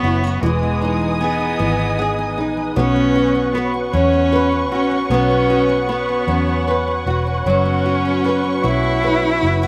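A heartfelt, swaying pop excerpt in B major at a slow 51 BPM in 6/8 opens with everything at once: a rich, nasal, boxy bowed cello sings the melody up front with vibrato over a double-tracked flamenco guitar with slapback echo and finger squeak. Behind them, a muted studio string section holds dark, veiled con sordino chords high above, a full-bodied jumbo steel-string acoustic guitar fingerpicks arpeggios in the background with its own slapback, and a round, foam-muted vintage electric bass sits up front. The harmony moves from Emaj7 to Bsus2 at 2.8 seconds and F#sus4 at 7.5 seconds, all captured dry in an open-air outdoor setting.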